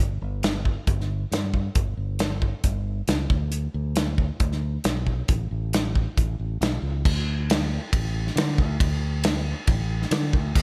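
Jangly and open-road in feel, this brief cut from a longer folk rock and heartland rock piece moves at a straight 136 BPM in 4/4, with a bright, direct fingered electric bass sitting up front from the start. A natural country drum kit joins at 0.4 seconds with a punchy kick, medium-tuned snare, hi-hat, and dark ride and crash cymbals in a small-room sound. Light reverb surrounds the mix, and the music shifts into a new section at 7.0 seconds.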